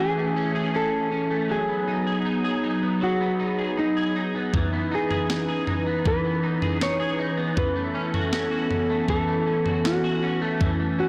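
Blown-out and overdriven, soaked in a long plate reverb, this hazy, haunting dream pop excerpt at 79 BPM drifts over Amaj7, G#m7, C#m9 and B9sus4, with a dark hollow-body jazz guitar carrying the melody through tape echo, a soft, flute-like pad holding slow-attack chords under chorus, a twangy, slightly broken-up electric guitar playing up-front arpeggios with ensemble chorus and tape echo, and a thumpy, sampler-style drum machine with kick, snare and toms entering at 4.5 seconds.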